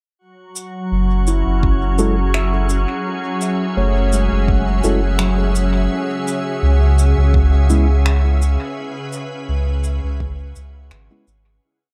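A lightly swung 4/4 ambient dub groove, meditative and hazy, rests on a soft, slow electronic kick in the background and sparse, distant cabasa and finger snaps trailing dub echo, under an up-front, round sine sub bass, a calm organ-like pad with ensemble chorus moving from F#m9 to C#m7 at 5.9 seconds, a glassy texture of drifting high overtones, ringing handpan loops with 12-bit sampler grit that drift against each other until 7.8 seconds, and sparse, mellow tine electric piano stabs echoing through the mix as the piece fades out from 7.8 seconds.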